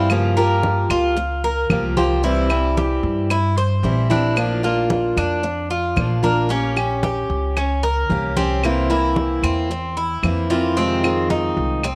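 This Cuban son and guajira piece moves at a danceable 112 BPM in a straight 4/4, with a nostalgic mood, and is cut from a longer performance. Up front, a picked steel-string acoustic guitar carries the accompaniment with a warm concert tone, while the bright, metallic Cuban tres plays arpeggios on its double strings, some of them octave-doubled. The upright bass, also up front, is played pizzicato, and its dark, growly, thumpy steel strings anchor the low end. From 0.1 seconds, woody, close and dry claves and low-tuned congas with a thin, bright skin sit in the background. The harmony runs through Gm7b5, C, Bb, Gdim/Bb and C7 before landing on Fm7, all within light studio reverb.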